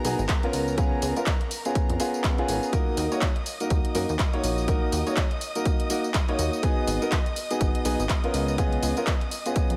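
A clear, woody upright piano riff with digital delay drives this bittersweet, soulful piano house cut in Eb minor at 123 BPM with swung sixteenths, sounding from the first moment together with sustained, sidechain-pumped violin chords played sul tasto with vibrato, a plucky, wave-folded analog bass, and overdriven handclaps, hi-hat and tambourine, before a punchy, up-front overdriven kick enters at 0.3 seconds, the harmony moving through Abm7, Db7 and Ebm inside a roomy digital ambience.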